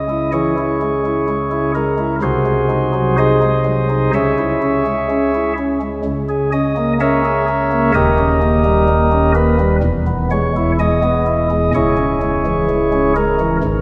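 Classical chorale-style piece for solo chamber organ, grave and dark, moving at a rubato 63 BPM in 4/4 with tuning at A4 = 441 Hz. The organ's soft, warm flute stops, with audible chiff and chamber voicing, sit up front and span C#1 to E5, tracing a harmony that begins on C#m, passes through G#7/B#, A#m7b5/C#, D#7 and E, and settles back on C#m. A church reverb with a 2.9-second decay surrounds the playing in this 13.8-second excerpt taken from a longer work.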